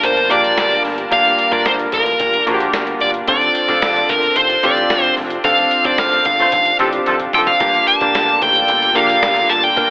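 A dark, overdriven lead guitar carries the melody up front over glossy chorused retro synth keys, a lush detuned unison pad, a growly picked electric bass in the background and a gritty, pitched-down boom bap sampler-style kit with gated reverb in this dramatic, urgent 1980s-style pop excerpt at 111 BPM in G minor, moving from Gm7 to Dm7/F and back, with a clear, roomy horn section stabbing at 6.4 seconds during a band accent, a drum fill at 7.1 seconds, and a telephone-like sound with light reverb and digital ambience.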